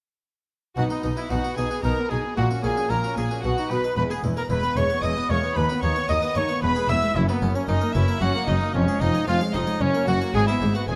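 A solo trumpet with a classical tone carries the melody alongside a period-style, gut-string violin section in this festive, brilliant baroque-style concerto movement in B major at 113 BPM in 3/4, with a second violin line in the background, dark, nasal violas and a bright, plucked Italian-style harpsichord filling in the harmony, and reedy cellos and a full-bodied, close-miked double bass section anchoring the low end in a lightly reverberant, detailed sound.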